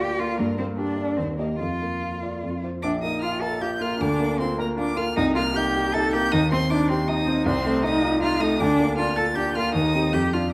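From the first moment, a bowed violin sings the melody with rich, smooth vibrato above an expressive, up-front cello second line sliding with portamento, while an intimate baby grand piano accompanies with audible action noise and long sustain, in a lively, spirited classical-period piano trio movement in Bb major at a quick 156 BPM in 3/4 with rubato, set in a moderate recital hall reverb and cut from a longer piece.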